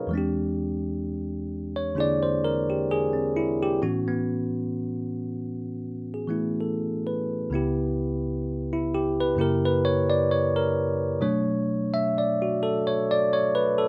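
Slow swung eighths at 65 BPM in 4/4 give this jazz ballad a relaxed, unhurried pulse, and the mood is wistful and melancholic. A lone tine electric piano carries the whole fragment, its bell-like, bright and clean tone sitting direct and up front, ranging from C#2 up to E#5. The harmony moves from E7alt to A69 at 3.8 seconds, then darkens through C#m7b5, F#7b9 and Bm9 in quick succession. A light reverb lends the sound a gentle sense of space. Cut from a longer piece, the passage runs just under 14 seconds and feels like a single reflective phrase.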